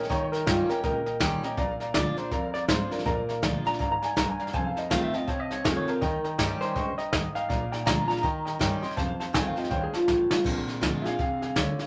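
Rockabilly at 162 BPM with a rollicking, upbeat swing in Bb mixolydian, this excerpt sets a twangy, slightly broken-up electric guitar melody with spring reverb over a brilliant upright piano with audible action noise, a full-bodied picked dreadnought acoustic guitar, a thumpy pizzicato upright bass with gut strings sitting in the background, and an up-front brushed drum kit with dark cymbals and a boomy kick, whose fill at 10.1 seconds hands off to a short piano solo from 10.4 seconds once the guitar stops.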